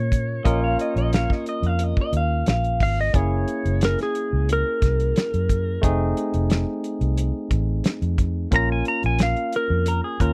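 Dry, close and 1970s-styled, this short cut from a longer straight-eighth soul blues in Bb minor, tuned to A4 = 436 Hz, moves at 89 BPM with a mournful, smoky air, as a twangy, compressed lap steel carries the slide melody over a barky tine electric piano, a round, foam-muted fingered bass and a thuddy, cloth-damped drum kit up front with a medium-tuned snare and tight kick, while a slightly broken-up, lo-fi electric guitar through a small old amp adds a phaser-tinged second line from 0.4 to 2.8 s and returns at 9.9 s, over chords moving from Bbm through Gb7 and F7#9 back to Bbm.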